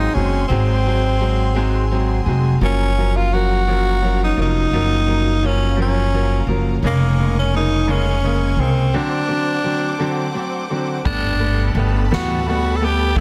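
Heard through light small-room reverb and a dense, heavily limited modern master, this fragment of a longer piece is an aching, dramatic six-eight pop ballad moving at a slow 57 BPM in 6/8 with a straight feel. A raspy, growling tenor saxophone carries the jazz-styled solo melody up front, trailed by tape echo, while a clear, polished baby grand piano supplies accompaniment. A lush, bowed symphonic string section holds smooth sustained chords with vibrato, and a fingerpicked archtop guitar with fresh strings plays very quiet arpeggios until 11.1 seconds. Underneath, a woody, thumpy pizzicato upright bass with gut strings sits prominently in the mix. The harmony travels from Ab7 through Gbmaj7 and Bbm7/F to D7, a break arrives at 8.9 seconds, and at 11.1 seconds the music settles on Gadd9 as a soft-mallet drum kit with a fat snare and boomy kick joins in the background.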